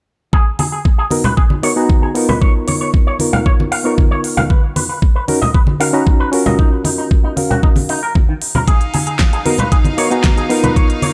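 A twangy envelope-filtered guitar riff with subtle chorus and delay opens this cosmic, groovy nu-disco cut at 0.3 s over an up-front knocking electronic kick, joined by a pop kit's fat snare and crisp hats and saturated congas in a straight 4/4 at 115 BPM in G# dorian. A reedy electric piano with fast tremolo, sidechain pumping and a filter sweep plays chords through G#m9, C#13, Bmaj9 and D#m7. At 8.7 s a biting, earthy chamber violin section adds pumping sustained chords as the progression returns to G#m9, all set in a digital ambience.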